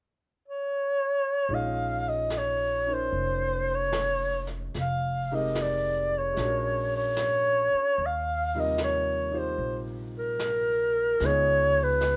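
A rough home-demo mix in a small, wet-sounding room frames this wistful, smoky jazz ballad excerpt in Bb minor, moving at 74 BPM with a swung 4/4 feel. A mellow, vintage-toned clarinet carries the melody up front from 0.5 seconds, its soft-attack subtone and vibrato sitting in plate reverb. At 1.5 seconds, a clear grand piano, also in plate reverb, joins with woody pizzicato upright bass and a brushed jazz kit on snare and hi-hat, as the harmony moves from Bbm11 through Fm11 and Bb7alt to Eb69 and Db9.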